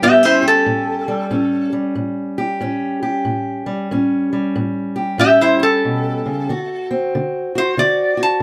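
Close, detailed microphones and a moderate studio reverb frame this gritty, swaggering acoustic country blues cut from a longer piece, where a metallic, nasal lap resonator guitar, played with fingerpicks and a steel bar, takes a bright slide solo up front over a boxy, parlour-style fingerpicked steel-string acoustic guitar in a swung 4/4 that moves from A7 to D7 at 6.5 seconds.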